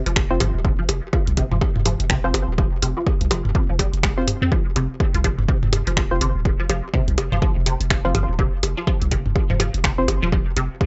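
This hypnotic, cool minimal techno excerpt opens at 0.1 seconds with a squelchy, resonant blip pluck riff, a deep sub bass and a punchy analog drum machine of finger snaps and hi-hat, all arriving together. It moves at 124 BPM in 4/4 with a 59% swing on the sixteenths. An up-front electronic kick and a layer of overdriven electronic percussion blips and toms join at 0.2 seconds, both re-recorded in a small room. The detuned sawtooth pluck moves through a phaser, chorus and dub echo, with a moving notch in its filter and sidechain pumping that also shapes the saturated, sine-based sub bass with its pitch-drop attack. From 0.3 seconds a muted, evolving dub chord stab sits up front, its filter sweeping while chorus and digital delay trail each short hit over an F5 harmony. The mix is dry and dark, with its top end rolled off well below the highest frequencies, keeping the whole groove close and subdued.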